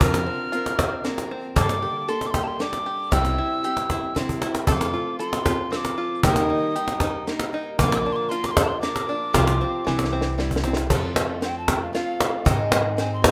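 Acoustic folk for a duo or small band, this peaceful, pastoral cut from a longer piece moves at 116 BPM in a straight 3/4 in F major, with a dry, rough home-demo sound. A close-miked tin whistle carries the melody high in its range, its airy, hollow tone marked by tongued notes, chiff and vibrato, and from 10.9 seconds it takes a brief solo. Beneath it, a parlour-style steel-string guitar is picked with a warm touch while an open-back banjo fingerpicks bright, plunky, twangy arpeggios. An upright bass with gut strings gives a woody, thumpy pizzicato foundation. A compact cocktail kit with a high-tuned snare, tight kick, hi-hat and crash sounds dark and smooth, adding fills at 4.2 and 9.9 seconds, while a snappy cajon sits up front in a live room. The chords wander through colourful turns such as Bbadd9/F, Gmadd9, Eb and Csus4 before landing on F and shifting to Ab at the close.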